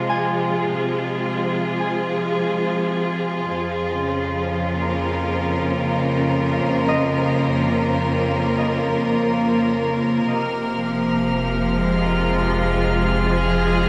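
Ambient excerpt in F minor at a slow 53 BPM in 3/4, melancholic and serene, where a rich, biting symphonic string section holds sustained chords up front throughout, a bright, ringing concert harp plays arpeggios with tape echo in the background until 9.5 seconds, and at 10.3 seconds a round analog bass with tube saturation and a dark, reedy chamber violin section with gut-string tone join, all bathed in a dreamy plate reverb.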